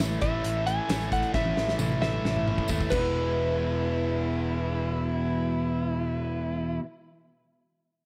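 Swaggering and sunny, this short classic rock excerpt sets a slightly broken-up, compressed slide guitar melody over bright riffs from two distorted electric guitars (one double-tracked), a hollow-body overdriven semi-hollow guitar in the background and an amped, up-front picked bass, while a dark, punchy big rock drum kit with a fat snare plays a fill and drops out at 3.0 s, a jingly tambourine stops at 3.3 s, and a fuzzy octave-fuzz lead guitar enters at 2.9 s as the chords move from A to E in light studio reverb.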